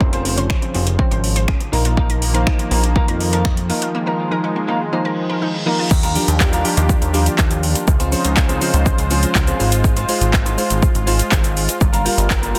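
An upbeat, euphoric dance-pop excerpt opens with an overdriven deep house kit up front, with a deep kick, metallic hats, finger snaps, handclaps, shaker and crash in a large room. Beneath it sit a glossy, retro chorused synth bass with sidechain pumping, mellow electric-piano-like keys, and a smooth, warbling vintage pad, with the keys and pad both chorused and pumping. A slightly broken-up electric guitar riff with analog chorus stays in the background beside a lush, wave-folded unison pluck playing arpeggios through flanger and dub echo; an electronic reverse cymbal arrives at 5.2 seconds, the pluck drops out at 5.9 seconds, and from 6.4 seconds a very quiet, crisp group handclap joins as the chords move through Ebmaj9, Dbmaj7, Ab6 and Gm7 in a dense, heavily limited modern master.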